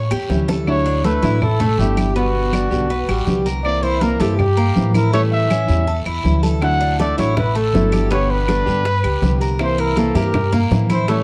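A straight 4/4 son groove at 161 BPM sets a sunny, danceable mood in this Cuban son and guajira piece in D major, cut from a longer performance. Background congas ring out under soft hands, with raspy guiro and woody claves close behind, while very quiet, round, low-tuned bongos sound briefly during the opening drum fill and return at 6.6 seconds. A thumpy, gut-strung upright bass sits up front with a woody pizzicato tone, anchoring a cycle of A7, Dadd9, G and C7. The Cuban tres picks metallic arpeggios on its double strings, some doubled at the octave, while a bright, fingerpicked nylon-string guitar adds classical accompaniment from 0.3 seconds, its finger squeaks audible. Over it all, a breathy solo trumpet carries the melody up front, whispered and intimate with soft attacks, scooped notes, vibrato and a touch of tape echo. Moderate studio reverb gives the dark, warm production a cozy sense of space.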